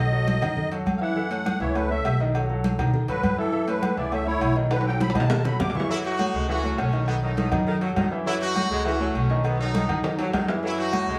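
A reedy, shimmering musette accordion sits up front and carries the melody as a solo for the first 5.9 seconds of this sunny, danceable salsa excerpt, moving at a brisk 203 BPM in straight 4/4. Beneath it, a clear grand piano with polished, long sustain plays the accompaniment, and a woody, dark pizzicato upright bass holds the low end over a steady alternation of B7 and F#m7. The percussion bed mixes soft-handed, damped congas set in the background, ringing metal agogo bells and timbales heard close and dry, and a round, low-tuned cowbell that stays very quiet. At 5.9 seconds the accordion hands off to a tight, bright trumpet section up front, joined by a saxophone section with vibrato carrying a second line beneath it. Drum fills mark the turn at 4.7 seconds and again near 10.0 seconds, and the whole band sounds as if playing live in one room with a wet studio reverb.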